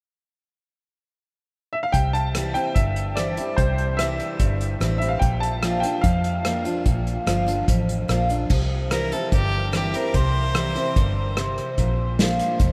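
Nostalgic and down-home, this short cut from a longer honky-tonk and classic country piece moves at a straight 146 BPM in 4/4, centred on C mixolydian. A bright upright piano carries the melody from 1.7 s to 8.0 s, its slightly detuned, woody tone and audible action noise giving it a worn, intimate character. From 1.9 s a picked steel-string acoustic guitar with fresh strings sits up front in the accompaniment, joined by a round, foam-muted vintage electric bass and an acoustic drum kit played with bundle sticks, its punchy kick, medium-tuned snare, rim clicks, hi-hat and crash heard in a studio room. The harmony moves between C and Bb, and at 8.9 s a clear fiddle takes a solo, nasal and earthy with light vibrato and an airy bow. A huge ambient reverb places the band in a vast, echoing space.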